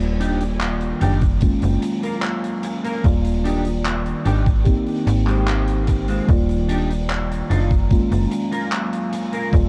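A mellow tine electric piano, a snappy, up-front slap-like FM bass with a metallic attack and a huge arena drum kit of handclaps and hi-hat in a pumping hall open this faded, woozy vaporwave excerpt. A dark, picked clean electric guitar riff enters under a filter sweep, ensemble chorus, analog delay and 12-bit grit, while a warbling, detuned tape-like pad sustains nostalgic chords in the background and an overdriven, thumpy electronic kick joins at 1.2 seconds. The harmony drifts between Ebmaj7, Gbmaj9 and Abmaj7 in a dark, warm cassette production with small room ambience.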